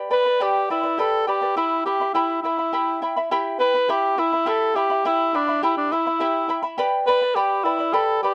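A dry, close 1970s-style studio sound frames this melancholic, wistful Andean folk excerpt in E minor pentatonic at 69 BPM in a straight 6/8, where a mellow, smooth-topped cor anglais sings a classical-style solo melody up front from 0.1 seconds over a shimmering, fingerpicked acoustic charango whose double strings, some octave-doubled, give the accompaniment its sparkle as the harmony moves from G to Em at 1.6 seconds and back to G at 6.8 seconds.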